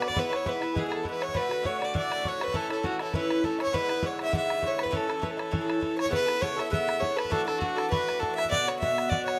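A cheerful, bright Celtic reel in A major at 201 BPM opens with everything at once: an up-front fiddle with an airy bow, light vibrato and plate reverb carries the melody over a reedy accordion second line in the background, a metallic, double-strung picked bouzouki accompaniment and a tight, damped bodhran, all in a moderate studio room as the chords move from E through D and A to Bm in this brief cut from a longer tune.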